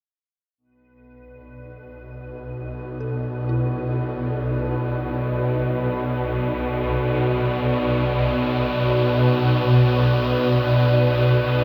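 Cavernous and drenched in a huge eight-second reverb, this dark ambient drone in B minor drifts in free time as a moody, nasal analog pad fades in on a sustained B minor chord with lush chorus and shimmer, joined at 1.3 seconds by a faint crystalline glass pad glinting in the background, at 1.6 seconds by an up-front swarming, granular low drone, and from 3.0 seconds by a very quiet, inharmonic detuned synth bell tracing eerie arpeggios.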